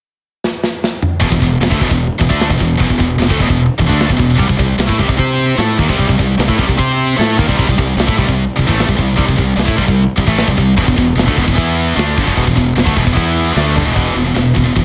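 Relentless and aggressive, this heavy metal passage is cut from a longer piece and drives forward in a straight 4/4. A tight metal drum kit opens with a fill from 0.4 seconds, its crash, hi-hat, tight kick, medium-tuned snare and toms sitting up front with a mid-forward, big-room character. At 1.2 seconds two heavy high-gain guitars come in together on a distorted, picked riff, their bright tone spanning low to high register, moving from a power chord on E through C toward an E minor chord at 10.8 seconds. A fingered electric bass joins at the same moment, its fuzz and overdrive giving a growly, direct-and-amped low end. Another drum fill at 13.6 seconds sets up a return to the E power chord at 14.0 seconds, all within a small room ambience.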